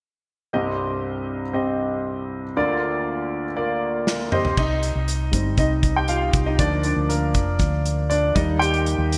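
A straight 4/4 pulse at 119 BPM drives this dramatic, earnest piano-driven pop passage in C minor, cut from a longer piece. An intimate concert grand opens with chorused chords over Cm and Bb/D, with audible action noise and long sustain. A gated-reverb drum kit with a tight kick and dark cymbals enters with a fill at 4.1 s, and a round, hollow-body electric bass joins at 4.6 s as the piano takes a solo over Bb and Eb, all set in a lush hall and bright 1980s-style digital sheen.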